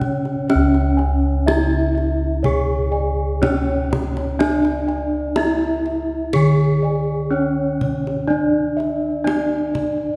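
This short passage of Javanese gamelan, cut from a longer piece, opens with all its parts sounding together in a stately, hypnotic groove. A bronze metallophone carries the melody up front, its wooden-mallet strokes ringing with the shimmering beats of paired tuning and a vintage, band-limited colour. Above it, a second metallophone struck with padded disc mallets and a set of bossed gongs weave soft, mellow arpeggios. Lower bossed gongs supply a dark, smooth bass from the background, dropping out at 9.3 seconds. A kendang adds tight, hard-handed strokes with a small-room sound. The ensemble is heard from further back in a concert hall, bathed in lush reverb, and the passage closes at 10.2 seconds.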